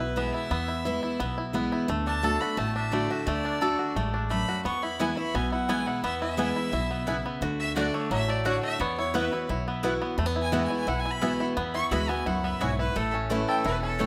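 A clear, earthy fiddle leads this joyful bluegrass passage and carries a virtuosic solo from start to finish, its bowed line marked by light vibrato and a touch of analog delay. Beneath it, a picked steel-string acoustic guitar lays down warm accompaniment, while a bright, twangy banjo, played with fingerpicks, sits up front with percussive arpeggios. An upright bass with gut strings anchors the low end, its pizzicato notes woody, dark and thumpy. At 5.0 s a mandolin joins with round, double-string stabs. The chords move mostly between E and D in a straight 4/4 feel before landing on A near the close, and the group sits in a moderate large-studio reverb in this fragment cut from a longer piece.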